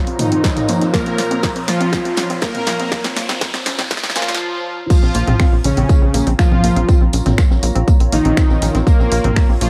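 A bold, brassy analog synth lead sits up front in this cinematic, dramatic melodic techno excerpt in Bb minor at 121 BPM. It carries a fat, detuned sawtooth melody with vibrato and chorus, pushed by sidechain pumping, analog delay and cassette-tape coloring. The opening build-up runs to 4.9 seconds. A punchy, layered electronic kick drives it, joined by a house drum kit with a punchy snare, finger snaps, hi-hat, toms and crash playing a fill, and a very quiet acoustic big-band kit with tambourine. A tight, driving sequencer bass pulses on Bb1 beneath a background pad built on a Bbmadd9 chord, deep and moody with a slow attack and long release. A warbling, lo-fi pluck arpeggio sweeps through a filter, while punchy synth brass stabs, a swarming, tense granular drone and an electronic riser feed the build until a short break at 4.4 seconds. At the drop, a very quiet, big polysynth adds a sustained second line, all set in a moderate studio reverb with a dusty home-cassette character.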